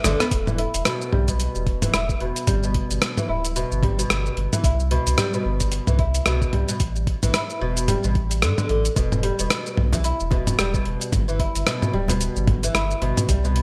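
Organic downtempo in E minor at 111 BPM with a 16th-note swing, mystical and hypnotic, this excerpt from a longer piece opens on a brief drum fill as a woody, plectrum-plucked fretless oud spins up-front arpeggios through a low-pass filter and delay over a round sine sub bass, a gritty, compressed sampler-style soul kit of hi-hat, rim click, shaker and toms with gated reverb, a thumpy electronic kick from 0.3 seconds, and a deep, dry frame drum struck with hard hands in the background, heard briefly at the very start and again from 9.9 to 12.2 seconds, all moving through E5, G, Cmaj7, A5 and Em in a bright 1980s-style digital production with light ambience.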